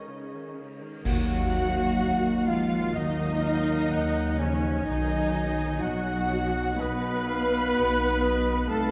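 Bittersweet and sorrowful, this slow, rubato cinematic film-score passage in Eb minor moves at 63 BPM and is cut from a longer piece, set in a vast, echoing cathedral-like space. A distant, lush violin section carries the expressive melody with vibrato and a soft attack, while a second violin section holds a smooth, even line in the background. A dark, roomy clarinet, a mellow cor anglais with a vintage, classical-style tone and a mellow French horn section sustaining chords join them from the start, over a rich, intense viola section that provides the accompaniment. At 1.1 seconds, as the harmony turns from Absus4 to Ebm, a very quiet, pure concert flute enters alongside an expressive cello section and a smooth double bass section, and the whole band strikes an accent. Dark clash cymbals and concert bass drum, close and dry, mark that moment until 2.9 seconds, and the harmony later settles onto B.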